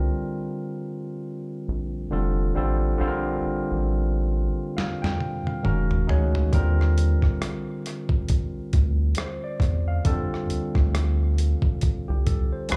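A barky, lightly overdriven tine electric piano with slapback echo and a rubbery, hollow square bass open this smooth, soulful neo-soul R&B excerpt at 68 BPM with a swung sixteenth feel, moving through lush chords like C9sus4, Bbmaj9 and Emaj9 before a gritty, pitched-down boom bap sampler-style kit with a thumpy kick enters on a drum fill at 4.8 seconds, all heard as a live gig through the venue's PA with club reverb.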